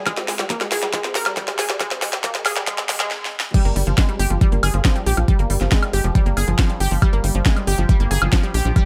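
This psychedelic trance excerpt opens with a build-up at 138 BPM, the overdriven, knocking electronic kick and a techno kit of cracking snare, smooth hi-hat, crash cymbal and woodblock driving a drum fill, while a lush, detuned unison pluck riff with sidechain pumping and delay plays over a Gsus4 chord and a filter sweep moves across a synth arpeggio sound. At 3.5 seconds the drop lands on Fsus2, and at 3.7 seconds a tight, punchy sequencer bass enters with a mellow, decaying sawtooth-and-square tone and ring modulation. The mood is psychedelic and intense, with the kick and bass sitting up front in a light reverb.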